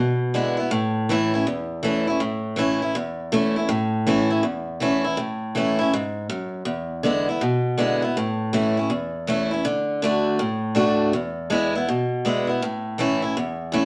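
A bright, boxy parlour-style steel-string acoustic guitar, picked and sitting up front with audible finger squeak, carries this rowdy, upbeat rock fragment alone, swinging through a short opening phrase and then a longer passage that moves from A through D and back to E7 before landing on A at 12.6 seconds, all in a moderately reverberant studio room.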